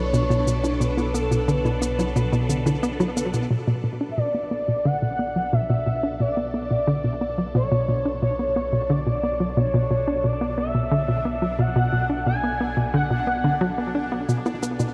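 Hypnotic and cosmic, this slice of ambient, sequencer-driven space music centres on a hollow, bouncy square-wave pluck riff up front, its filter sweeping through the opening 3.5 seconds, while a smooth sawtooth lead glides with portamento and vibrato through tape echo and a gritty vintage-sampler edge. Beneath them, a swirling, phased string machine holds a Bm7 chord and a round sine sub bass sits low, both fading in from 3.5 seconds. A bubbling, resonant stepped-filter texture enters in the background at 5.8 seconds, and electronic cabasa and congas appear briefly at the start and again at the very end, with the whole piece set in a huge ambient reverb.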